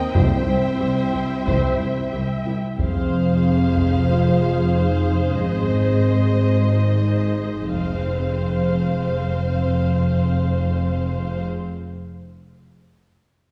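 This cinematic, epic orchestral film score excerpt feels heroic and relentless, moving in a steady, straight four. A lush violin section carries a brief, vibrato-rich melody that ends at 2.5 seconds, while a second violin section holds a clear, intense line that continues throughout. Focused violas fill in the accompaniment, a mellow, close-miked French horn section sustains chords in classical style, and a soft-attacked full string section adds expressive sustained harmony in the background until 2.8 seconds. Underneath, smooth, even double basses and warm, expressive cellos anchor the low end, and a distant taiko ensemble struck with hard sticks drives the music until 9.0 seconds. The whole piece is heard from further back in a scoring-stage space, with a long, wet reverb tail that gives the orchestra its grand scale.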